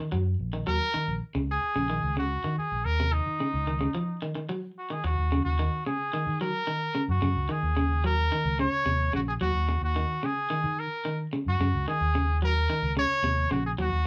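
Afrobeat with a driving, funky drive, this short cut from a longer piece rides a straight 4/4 groove over an Eb minor seventh chord. A picked electric guitar, bright and twangy at the edge of break-up, spins arpeggios from the very start, while a fingered electric bass sits up front with a dark, round, amped tone. A clear trumpet enters at 0.7 seconds to carry the melody, its light vibrato and vintage, pop-style solo voice placed prominently in the mix. A break arrives at 3.9 seconds before the music moves into a new section at 5.0 seconds. The band sounds as if playing live together in one room, wrapped in a moderate studio reverb.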